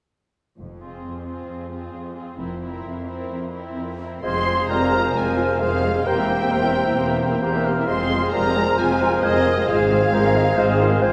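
Restless and stormy, this quick classical-period orchestral movement in F minor moves at 133 BPM in 4/4 with a rubato feel, opening at 0.6 s with dark, con sordino cellos and double basses holding the bass; at 0.8 s the violins join, carrying a lush, veiled melody above a faint second violin line, while violas sit in the background. At 4.2 s the winds and brass join, with a pure, hollow flute high above, a mellow cor anglais, a smooth-topped clarinet and a bassoon tucked behind, and a loose, distant French horn section holding barely audible sustained chords. The harmony passes from Fm through C7/E and back to Fm, set in a wet concert hall reverb heard from further back in the room, in an excerpt cut from a longer piece.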